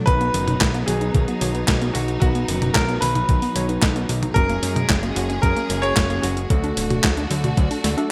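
This sunny, danceable italo disco excerpt at 112 BPM opens with lush, distant bowed strings holding chords, a warbling lo-fi pluck playing arpeggios through chorus and digital delay, and clean electric piano stabs, all three tucked in the background. From 0.1 s an intimate grand piano carries the melody with audible action noise and digital delay, over a fat, saturated sawtooth bass, a thumpy sampler-style kick and an up-front 12-bit drum machine of handclaps, hi-hat, snare and toms in gated reverb. The harmony moves from B to F#add9 to D, and the bright 1980s-style digital production sits in a moderate plate reverb.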